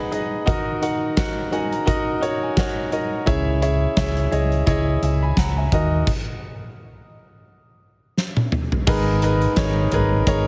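Heavily compressed, radio-style sound with light reverb and a small-room ambience frames this bittersweet, earnest piano-driven pop excerpt at 86 BPM in 4/4 with a gentle 16th-note swing: a brilliant, up-front grand piano plays a fill over a D#m chord before the harmony moves to C#m, and a huge arena drum kit with bright cymbals, a fat snare and a punchy kick drives it along. A dark, round, amped fingered electric bass joins at 3.3 seconds, and a stop at 6.1 seconds gives way to a drum fill before the piece lands on G#madd9 at 8.9 seconds.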